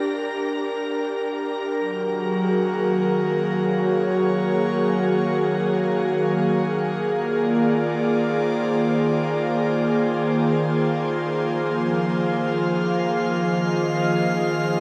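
Ambient music in free time, reflective and spacious, this short passage cut from a longer piece rests on an airy, breathy pad of sustained chords with a soft noise layer and chorus, sitting bright and up front throughout, while a glassy texture of drifting overtones glints at the start and returns at 12.4 seconds. An organ-like drone enters at 2.8 seconds, calm and detuned in unison with an ensemble chorus, as the harmony moves from Gm through Gbadd9 and Bb7 to Fm7. A wet shimmer reverb with an 8.0-second tail bathes the whole.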